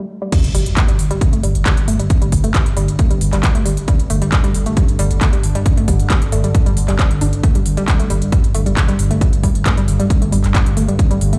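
A woody, wave-folded pluck riff with chorus, delay and sidechain pumping opens this intense, hypnotic excerpt of driving peak-time techno at 135 BPM, and at 0.3 s the drop lands on a G5 chord with a very quiet impact, an up-front overdriven heavy kick and an overdriven techno kit of crash cymbal, handclaps and smooth hi-hats, followed closely by a thick, saturated sub bass pumping beneath a low-pass filter and, from 1.1 s, a detuned analog drone with chorus sitting in the background, the mix sounding as if played on a big sound system in a bare room with large studio reverb.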